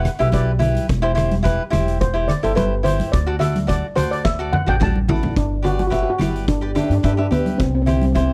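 This dry, close recording has a 1970s studio character, with little reverb. The piece is a carefree, festive calypso in G major at 108 BPM in a straight 4/4, cut from a longer work. A shimmering, mellow double-seconds steel pan sits up front with a soft, vintage, band-limited tone from soft rubber sticks, taking a solo from the start until 5.4 seconds over harmony that moves from E minor through C/E to D. A crisp, picked acoustic cavaquinho supplies the accompaniment, while a woody pizzicato upright bass with steel strings anchors the low end. An oversized, low-tuned drum kit with a big-room, gritty, saturated sound brings a fat snare and a punchy kick, playing a fill from 4.2 seconds before the harmony turns to G and then C. Warm, thick-skinned congas struck with hard hands add compressed, medium-tuned percussion.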